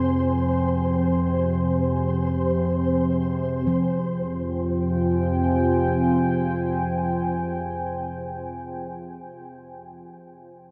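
Dark ambient drone in free time and F minor, dark and cavernous, set in a huge wet reverb with a dark production, and cut from a longer piece. An up-front analog drone, mellow and evolving with ring modulation and chorus, sits low under a deep, moody pad of detuned sawtooth unison layers with a sub octave, holding sustained chords on an Fmadd9 until 9.0 s. Very quiet bossed gongs with a bronze, beating tone play soft padded arpeggios on F3, while a grainy, flickering granular texture hovers high on C5 and stops at 3.7 s.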